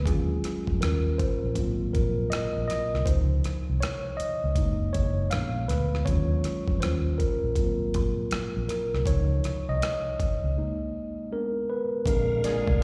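R&B and neo-soul at 80 BPM in Eb dorian, with a late-night, introspective mood and a swung sixteenth feel. A worn, slightly out-of-tune tine electric piano with slapback echo takes the solo from the start over chords such as Ebm11, Ab13 and Dbmaj9, backed by a dark, foam-muted fingered electric bass and a gritty, overdriven sampler-style drum kit with a thumpy kick and rim click, and there is a break at 10.6 seconds. Near the end of this cut from a longer piece, a tonewheel organ with fast rotary speaker and key click enters at 12.1 seconds and a mellow horn section adds brief octave-doubled stabs, all heard as a live gig through the venue's PA in recital hall reverb.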